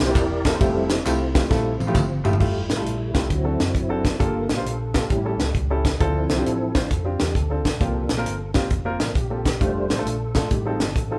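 A clear tonewheel organ through a slow rotary speaker with chorus vibrato opens this jubilant, reverent uptempo gospel passage in F major at 133 BPM with a swung feel, taking a short solo until 2.4 seconds while a tight, up-front funk drum kit with a high-tuned snare plays a fill and vintage-sounding tambourine and handclaps sit in the background until 2.3 seconds. A round, punchy hollow-body electric bass and a mellow baby grand piano with audible action noise play from the start alongside the organ, which then settles into sustained chords, all captured live in one room with a moderate large-studio reverb.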